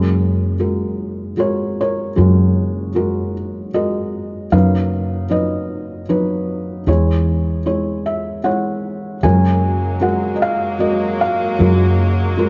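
An acoustic folk-pop ballad in 3/4 at 76 BPM and F# major, intimate and heartfelt, this excerpt sets a soft, felt-muted upright piano up front carrying the melody, its action noise audible and its notes short-lived, over a dark, round, punchy foam-muted electric bass. The harmony moves from F#add9 to E6 at 6.9 seconds and back to F#add9, where a chamber string section enters at 9.2 seconds with bowed, sul tasto sustained chords, light vibrato and a smooth top. An echo chamber reverb gives the recording a moderate sense of space, while a rolled-off top end keeps it mellow.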